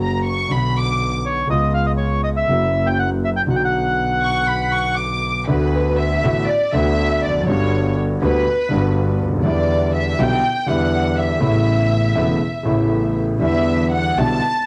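A rubato tango pulse at 121 BPM in 4/4 carries this dramatic, passionate excerpt from a longer piece, where a reedy, band-limited bandoneon with cassette-tape grain sings the melody from 1.3 to 5.0 seconds over an intimate concert grand with audible action noise and a biting, bowed double bass touched by transformer saturation, before the music turns from B harmonic minor to D major at 5.5 seconds and a sul tasto violin section with soft-attack vibrato takes a solo through to 14.7 seconds, all heard in a moderate studio reverb with the vintage character of a home cassette recording.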